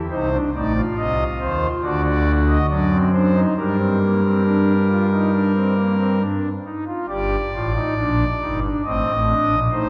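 A pipe organ on thick, romantically voiced foundation stops plays alone and up front through this short, stately cut from a longer baroque-style three-part fugue in a straight, unhurried four. Its elegant lines reach from G1 up to Eb5 over A diminished, D7 and G minor harmonies, with A diminished returning at 8.8 seconds, all set in a wet church reverb that hangs for about 2.6 seconds.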